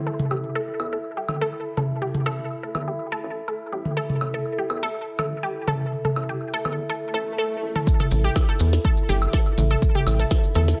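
Minimal techno at 123 BPM, cool and quirky in this short excerpt: a warbling, nostalgic lo-fi pad and a squelchy, bright resonant blip pluck riff under a filter sweep ride on a rubbery, hollow square bass pumping with sidechain and up-front electronic toms and woodblock with tape echo, until a background swell at 7.0 s leads into a drop at 7.9 s where an overdriven deep kick and grainy close maracas join the echo-heavy mix, followed at 8.1 s by a tiny clicky drum kit with hi-hat, ride and snare.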